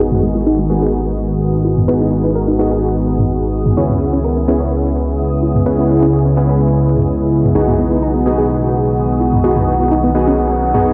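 Progressive house at 127 BPM in G# minor, this bittersweet, emotional passage is cut from a longer piece and moves through G#m7, C#m7 and B6 chords. An evolving wavetable pad holds sustained chords with a slow attack, its morphing, warbling tone colored by phaser and its own reverb, while a bright, up-front supersaw stab punches through with tape echo. Beneath them a fat analog bass, thick and detuned with tube saturation, anchors the low end, and a lush unison pluck sits in the background playing arpeggios through cassette tape and tape echo. A reversed, swelling texture shimmers high at D#6 from the start, and electronic toms and congas with a tape-softened analog character add percussion from 0.1 seconds, joined by a very quiet, overdriven electronic hi-hat. Filter sweeps run across the pluck and pad throughout, a faint noise sweep arrives at 10.4 seconds, and the whole dreamy mix is soaked in a lush hall reverb and rounded off by a low-pass filter.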